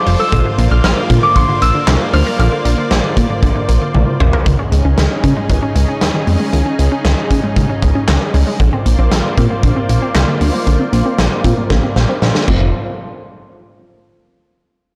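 Bright and wistful, this synth-pop passage moves at 116 BPM in a straight 4/4 and is cut from a longer piece. A ringing, fingerpicked concert harp carries the melody only at the start, from 0.0 to 3.9 seconds, its notes given a slapback echo. Beneath it, a lush, thick unison pad holds detuned, chorused chords through a low-pass filter, while a punchy, wave-folded pluck sits in the background playing arpeggios, also filtered and echoed. A glossy, retro synth bass with a pulse-width-modulated, sawtooth tone and a moving notch sits dark and up front, and a huge arena drum kit with a punchy kick, medium-tuned snare, handclaps, toms and bright cymbals drives the groove, with fills at 3.9 and 11.7 seconds. The harmony moves from Bbadd9 to Dbsus2 and back before landing on F, and a filter sweep runs through the second section from 4.5 seconds. The mix has light reverb and small room ambience, but the recording itself is blown-out and overdriven.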